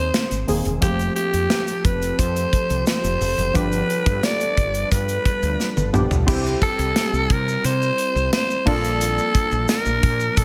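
This 1980s-style pop excerpt moves at 88 BPM in a straight 4/4, with a glossy, uplifting mood that settles into C mixolydian after 6.3 seconds. A breathy, raspy alto saxophone carries the melody up front, its scooped notes and vibrato trailed by a digital delay. Beneath it, glassy digital keys with chorus supply the accompaniment, while a mellow FM pad with ensemble chorus and its own reverb holds sustained chords in the background. A woody fretless electric bass gives a round, dark low end. At 0.1 seconds, a modern studio drum kit with a punchy kick, medium-tuned snare, hi-hat, tambourine, crash and toms enters up front in gated reverb, together with a very quiet, grainy tube shaker. A drum fill from 5.6 to 6.3 seconds leads the harmony from Abadd9, Fadd9 and G7 onto C and then Bbmaj7, all framed by light reverb and a small room ambience.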